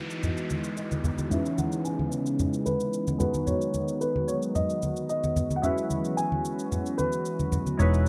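Worn, warbling cassette-tape sound with warbly pitch drift and light reverb frames this deep, soulful amapiano fragment at 111 BPM, moving through Emaj9, C#m7, G#m7 and F#7sus4 under a filter sweep. A polished, present baby grand piano carries the melody with low-pass filtering and delay, over detuned, chorused analog keys with a fast, decaying attack and an airy, flute-like pad of soft, slow-blooming chords. Low-tuned, thick-skinned congas and an overdriven, layered electronic shaker keep time, a faint electronic downlifter runs until 3.5 s, and a dark, round, hollow-body electric bass arrives up front on a low E at 7.8 s.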